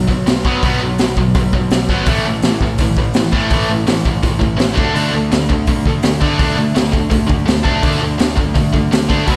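The recording has a big arena sound, with a moderate hall reverb around the band. This short, upbeat and energetic punk rock excerpt runs in a straight 4/4. A tight, bright distorted guitar sits up front, double-tracked and picked, with a slapback echo on its riff. It moves through B5, A5 at 2.1 seconds and D5 at 4.8 seconds. A raw garage drum kit enters at 0.1 seconds and sits close and gritty, with a punchy kick, a high-tuned snare, hi-hat, a pumping small-room character and a rolled-off top. Beneath them, a picked electric bass adds a growly low end from further back in the mix.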